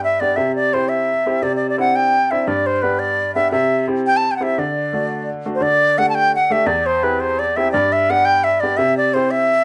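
Celtic folk in a cheerful, rollicking 6/8 at 114 BPM, this fragment of a longer piece features a reedy wooden flute with a crisp attack and vibrato carrying the melody up front, over a clear, intimate upright piano whose woody tone and audible action noise sit lower in the mix, playing chords around C, G and D through a moderate small-room reverb.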